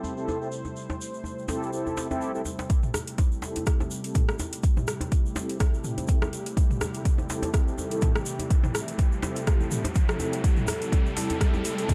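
A 124 BPM afro house groove with a 16th-note swing in A minor opens on an Am7 chord, as a smooth, warbling, chorused sawtooth pad and round, brassy synth stabs with delay pump over close, dry djembe and a grainy egg shaker, before an up-front, overdriven deep kick and a drum kit with metallic hats, rim click and toms arrive at 2.7 s and an electronic riser joins at 5.3 s to drive an earthy, spiritual build-up in a light digital ambience.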